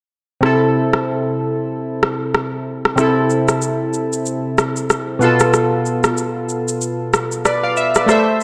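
Sultry and smooth, this afrobeats groove moves at 94 BPM in 4/4 with a swung sixteenth-note feel, cut from a longer piece. Up-front analog keys carry the accompaniment with a round, detuned tone that mixes pulse, sawtooth and triangle waves, touched by ring modulation, a filter sweep and chorus, as they shift from C6 to Bm7b5 at 5.2 seconds. A layered electronic rim click and shaker sit up front alongside them from 0.4 to 8.4 seconds, all set in a lush hall reverb within a dark, warm production.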